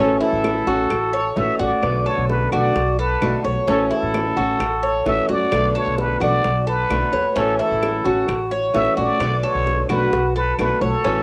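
A raspy, growling trumpet with a plunger mute leads this danceable Cuban son and guajira, its wah-wah tone, scooped notes and light vibrato close-miked and up front. A metallic Cuban tres with double strings picks arpeggios through plate reverb and analog delay, while a fingerpicked flamenco guitar with audible finger squeak and a dark, thumpy pizzicato upright bass on gut strings carry the alternating A6 and Bm7 chords, all on a home cassette recording. Tight bongos played with hard hands and distant, ringing congas enter very quietly at 0.2 seconds, and saturated, woody claves join in the background at 0.4 seconds.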